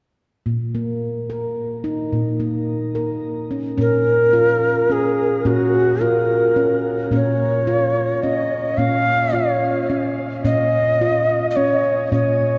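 A mellow cedar flute in the Native American style carries the melody from 3.8 seconds, its airy, woody tone showing vibrato, a crisp chiff on each attack, rolled-off highs and an unsteady quality, set up front in shimmer reverb and a diffuse ambient delay. Beneath it, a handpan that opens alone at 0.5 seconds plays ringing, stainless-steel arpeggios with the fingertips, also up front and bathed in shimmer reverb. This gentle, hypnotic world meditation in three-four time, cut from a longer piece, moves from a suspended chord to a minor one and sits in a vast, echoing, cathedral-like space.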